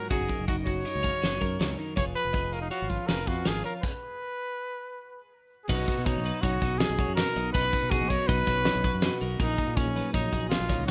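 Intricate and playful, this short cut from a longer math rock and midwest emo piece moves in a straight 5/4 with a rough home-demo feel and light reverb. A clear, punchy trumpet carries the melody up front with vibrato, sitting close to the listener, while a twelve-string electric guitar with a subtle chorus and a warm, clean tone provides picked accompaniment underneath. A second twelve-string guitar, bright and twangy, spins picked arpeggios further back in the mix. A growling, overdriven fingered bass and a loose indie drum kit with a fat snare, tight kick and dark cymbals enter at 0.1 seconds, the kit sounding up front. The harmony moves from F#6 to C#13/E#, then the band hits a stop from 3.8 to 5.7 seconds before the second section settles on B and closes on F#69/A#.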